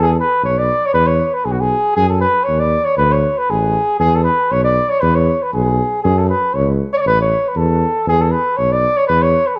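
Virtuosic and wild, this 9.6-second fragment of a longer Balkan folk piece swings along at 118 BPM in 2/4, with a classical-style flugelhorn singing the melody with vibrato, distant and roomy yet up front, over a mellow tuba bass line, framed by light reverb and a dark, warm production.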